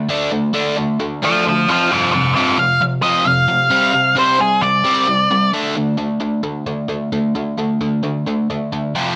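Straight 4/4 rock carries this sunny, swaggering fragment of a longer piece. A biting, double-tracked overdriven guitar sits up front and plays a picked riff from the very start through to 9.2 seconds, moving over D5, F5 and Csus2 chord changes before landing back on D5. At 1.2 seconds a dark octave-fuzz lead guitar joins, also up front and a touch louder, picking a distorted melody in its upper register with a slapback echo trailing each note. This lead solo shapes the opening section and drops out at 5.5 seconds, leaving the biting riff to carry the second section alone. A light reverb gives the pair a bit of air.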